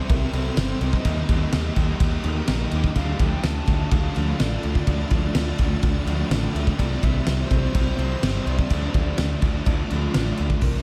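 A hazy, dreamy shoegaze and dream pop passage opens with its guitars and synths sounding together: an icy, crystalline pad holds slow-attack chords high in the background, with a soft, round sine lead carrying the melody through chorus and delay. Beneath them, a shimmering, octave-doubled twelve-string acoustic guitar picks arpeggios very quietly, while a crunchy overdriven guitar with reverse reverb, a thick fuzz guitar and a tight, double-tracked distorted guitar layer their riffs into a blurred haze. A fraction of a second in, a bright, direct electric bass and a loose indie drum kit arrive up front, the kit bringing a punchy kick, fat snare, dark cymbals and a pumping room sound. The harmony drifts from C through Eb to a lingering Dmadd9, then returns to C before settling on Dm near 8.7 seconds. Everything is soaked in a huge ambient reverb with a long tail, and this steady straight-time section is cut from a longer piece.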